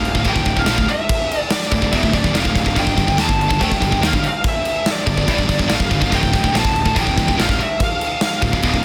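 Opening at once with the full band, this dark, epic heavy metal fragment at 143 BPM in D minor pairs a dark, distorted high-gain lead guitar melody with two bright high-gain rhythm guitars set back in the mix, a very quiet double-tracked overdriven guitar, a growly fuzz bass, and an up-front acoustic drum kit with a tight, soft-clipped kick, medium-tuned snare and crashes, all moving from Dm to G5 at 2.8 seconds and back to Dm at 6.1 seconds inside a small room and a dense, heavily limited modern master.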